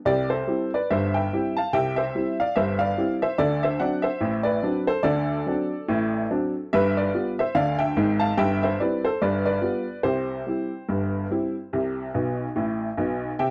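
Ragtime piano in C major, jaunty and playful, moving at 72 BPM in 2/4 with a light swing on the sixteenth notes. A lone upright piano, ranging from G1 up to A5, carries the whole piece from 0.1 to 13.5 seconds, its tone clear, worn and woody, slightly detuned, and placed up front. The harmony moves from C to D7 at 3.4 seconds and G7 at 6.7 seconds, passes through C/G and G7, and settles back on C at 10.0 seconds. The piano closes with a short fill from 12.1 to 13.4 seconds. The sound is dry and close, in the manner of a 1970s studio, with only a touch of small-room reverb, and the passage is cut from a longer piece.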